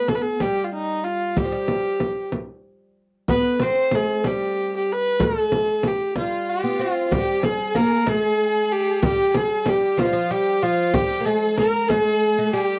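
A biting, earthy kamancheh carries the longing melody up front, its bowed line colored by light vibrato and portamento, while a bright, woody oud plays a second line beneath and a deep, saturated frame drum sits close in the mix. This hypnotic Persian modal ensemble piece moves in a straight 6/8 with a dry, close 1970s-style studio sound and light reverb. At 6.2 seconds a lush symphonic violin section enters with a smooth second line, and the excerpt is cut from a longer piece.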